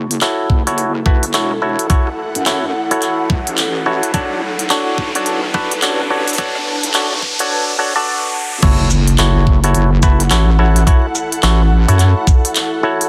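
A dense, heavily limited glitch hop excerpt with vinyl crackle and light reverb, swaggering and playful at 107 BPM with a 16th-note swing, where a saturated, wobbling square-wave bass and a knocking electronic kick sit up front beside a percussive, stringy auto-wah clav with dub echo, crisp hats, handclaps, rim clicks and shaker from a pop kit, an ethereal, detuned airy pad pumping in the background, and a riser building from 1.9 seconds through a filter sweep to an impact and drop at 8.6 seconds over F#m7 and Bm7.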